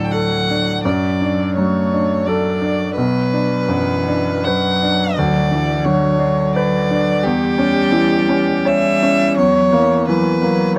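Melancholic and elegiac, this short portion of a slow romantic movement for piano trio unfolds in a flowing triple metre with a freely breathing rubato. The bowed violin carries the melody up front, its tone rich and smooth with a light vibrato and an even, polished top. Beneath it, the cello sings a second line in a low, narrow range, its soft attacks, vibrato and expressive portamento giving the part a yearning quality. The grand piano supplies the accompaniment across a broad register, its bright, brilliant voice open and ringing with long sustain, sitting prominently alongside the violin. The harmony darkens from major toward minor and a diminished chord before settling on an unresolved dominant seventh near 9.4 seconds. Close, detailed microphones and a light reverb keep the intimate trio clear and present.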